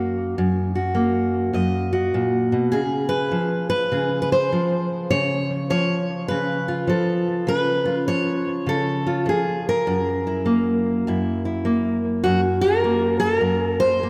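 Soaked in a long plate reverb that gives the mix a dreamy haze, this short fragment of soulful, laid-back acoustic country blues places a single fingerpicked steel-string acoustic guitar up front, its auditorium-sized body touched by analog delay. Moving at a relaxed 101 BPM with a swung 4/4 lilt, the guitar works through F#, C#7 and F#7 before settling back on F# at 12.2 seconds, ranging from deep bass notes to bright upper strings across its 14.1 seconds.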